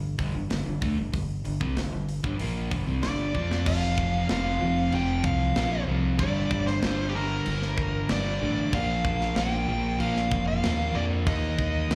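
Hard rock in G minor at 95 BPM, this heavy, aggressive passage is cut from a longer piece and sounds like a live gig heard through a club PA, with small-room ambience and club reverb around it. Two overdriven guitars play the riff from the start, one crunchy with a slapback echo and the other a picked semi-hollow body with a hollow tone, both sitting in the background. Up front, a growling fingered electric bass with overdrive drives the low end with a punchy, amped sound. A tight metal drum kit enters at 0.2 seconds with crash cymbal, hi-hat, a tight kick and a medium-tuned snare, and plays a fill just before the second section begins at 3.7 seconds. A nasal lead guitar with a parked wah joins at 3.0 seconds, carrying the melody through overdrive and slapback echo as the chords move from Gm through F5, back to Gm, then on to Bb5 and Eb5.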